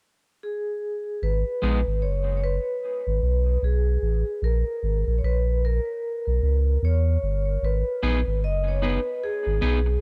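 A ringing, metallic vibraphone played with medium hard mallets opens this meditative, spacious dub reggae excerpt, its vintage motor vibrato trailing dub echo up front. At 1.2 seconds a deep, round sub bass enters with tube saturation, and a twangy, slightly broken-up electric guitar adds brief echoed accompaniment at 1.6 seconds and again from 8.0 seconds. The chords move from G#m to A#dim and back, captured in a dry, close 1970s-style studio sound.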